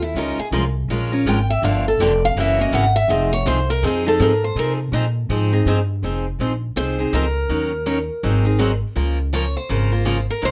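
At 0.0 seconds, a boxy, parlour-sized steel-string guitar opens with a picked solo line over a woody, growly pizzicato upright bass, setting a bittersweet yet fiery mood in this snippet of acoustic string swing in the jazz manouche style. The tempo is a brisk 164 BPM in 4/4 with a swung eighth-note feel, in F minor. A second picked steel-string guitar joins at 0.2 seconds on accompaniment, its fresh-stringed, concert-bodied tone crisp with audible finger squeak. The lead guitar's solo carries the first section, and a new section begins at 6.0 seconds, with harmonies moving from Bbm9 through Gm7, Gb9 and Fm7, then on to Ebm7, Ab7 and Db6. All three parts sit up front in a light room reverb, with plate reverb adding sheen to the lead guitar and the thumpy bass giving the rhythm its weight.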